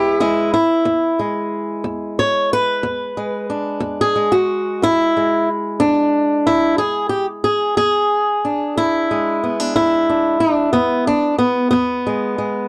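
A fingerpicked swing-style acoustic guitar carries this short acoustic country blues excerpt on its own, its old strings giving a woody, boxy tone that sits up front in a dry, close 1970s-style studio sound. The mood is swaggering and soulful, with a 12/8 metre and a straight feel, opening on an E7 chord. The guitar ranges from E2 to C#5 as the music moves into a second section at 6.8 seconds before the excerpt ends at 12.7 seconds.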